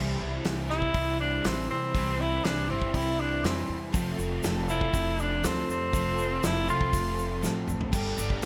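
A bright, 1980s-style digital production with moderate plate reverb frames this short folk rock and heartland rock passage at 120 BPM, nostalgic and hopeful as it moves from C to F and lands on Gadd9. A vintage tenor saxophone with vibrato sits up front carrying the melody from 0.7 s, over a picked dreadnought acoustic guitar in the background, a crunchy, double-tracked overdriven electric guitar riff with ensemble chorus, and a woody, growly pizzicato upright bass. A natural country drum kit with a punchy kick and gated reverb enters at 0.4 s and plays a fill before the chord change, while a grainy egg shaker joins at 3.9 s.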